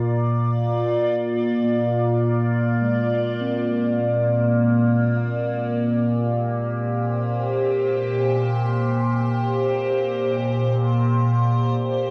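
A bright, morphing wavetable pad sits up front in this peaceful ambient fragment, holding sustained chords through a phaser and its own reverb across the full 12.1 seconds. Beneath it, very quiet muted synth keys with an intimate, felt-like, warbling, vintage character trace dark arpeggios coloured by chorus. A wet spring reverb and the texture of a home cassette recording give this serene section, cut from a longer piece, a hazy sense of space.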